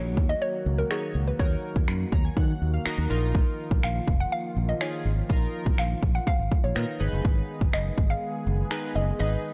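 A dark, warm digital ambience surrounds this driving, energetic dance-pop excerpt in Eb minor at 123 BPM, where a hollow, bouncy square pluck carries the melody through chorus and dub echo over glossy chorused retro synth keys, a smooth detuned analog pad pumping with the sidechain, a round fingered electric bass up front, and a punchy, overdriven pop drum kit of kick and finger snaps, moving from Ebm through Bbsus4 to Abm, with a synth keys fill at 1.9 seconds.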